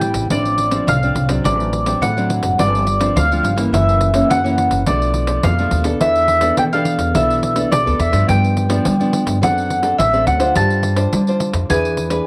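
A round, double-stringed mandolin takes the solo from the start of this yearning, lively samba and choro at 105 BPM, sitting up front beside a fingerpicked classical nylon-string guitar with audible finger squeak, both colored by cassette tape, while a woody pizzicato upright bass and a jingly, close and dry pandeiro played with soft hands fill out a small room touched by moderate spring reverb in this home cassette recording cut from a longer piece.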